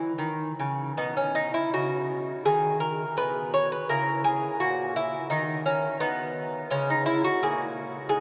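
Classical baroque-style dance for solo lute in B major at 85 BPM with a rubato feel, this radiant, dance-like excerpt features a delicate, fingerpicked lute of gut and some octave-doubled strings, heard up front yet bathed in a vast cathedral reverb, as its harmony moves from B through A#m7b5 to an unharmonized stretch at 5.3 seconds before settling on C#5.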